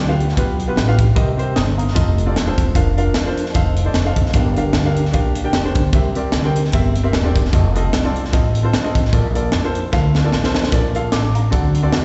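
A woody, pizzicato upright bass sits up front in this hopeful, soulful uptempo gospel excerpt, with a swung feel carrying it along. A vintage-sounding upright piano with long sustain and a slapback echo plays the accompaniment, while a crisp, gritty fusion drum kit with a punchy kick and high-tuned snare comes in at 0.2 s and breaks into a fill from 9.9 to 10.7 seconds. It sounds like a live gig heard through the venue's PA, with recital-hall reverb and a softened top end.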